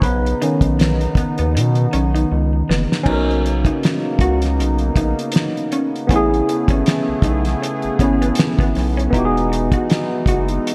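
Over a loping 79 BPM 4/4 groove with a light 16th-note swing, this smooth, warm neo-soul R&B fragment in B major sets a worn, lightly overdriven tine electric piano with lush chorus, taking a solo from 0.0 to 3.1 seconds, against a warbling sawtooth pad, a round, deep square-and-sine bass up front, a cloth-damped thuddy drum kit with a fat snare, tight kick, dark cymbals and gated reverb, and a dark, slightly broken-up picked electric guitar tucked in the background with subtle chorus and delay, all moving through Bmaj9, Amaj9 and Emaj7 in a bright 1980s-style digital production bathed in lush hall reverb.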